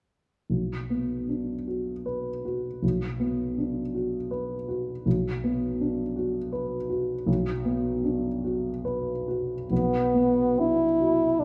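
Bathed in the wet reverb of a recital hall, this short fragment of a yearning, elegiac romantic classical duo in B minor and a rubato 3/4 at 65-84 BPM opens at 0.5 seconds with a dark, mellow baby grand piano accompanying from up front before a clear French horn, with light vibrato and a soft attack, enters at 9.7 seconds to carry the melody.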